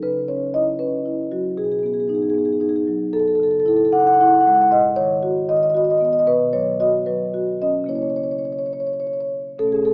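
Flowing and reflective, this short passage from a longer contemporary classical work features a solo marimba played with soft mallets. The rosewood bars give a woody, mellow, round tone that sits up front, ranging from F#2 up to F#5. The music moves in 6/8 with a rubato feel, drifting through a gentle harmonic sequence that opens on C#m7 and passes through B, F#m9, G#m7 and Bsus2 before settling on C#m6 at 7.9 seconds. A wet reverb, like that of a scoring stage, lets each chord bloom and linger, while the overall sound carries the character of a small speaker. The fragment closes at 9.9 seconds, feeling like a single contemplative phrase lifted from a larger piece.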